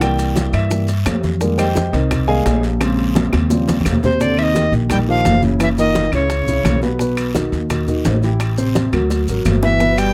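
A sunny, sophisticated Afro-Cuban jazz excerpt opens on an intimate grand piano solo with audible action noise, over a woody, thumpy pizzicato upright bass and background percussion of thick-skinned congas, round bongos, claves, raspy guiro, grainy maracas and distant, ringing timbales, with drum fills at 3.2 and 9.1 seconds, before a bright, reedy alto recorder with tongued chiff takes the melody from 4.0 seconds above a mellow, breathy trombone second line with scooped notes, both returning briefly near the end.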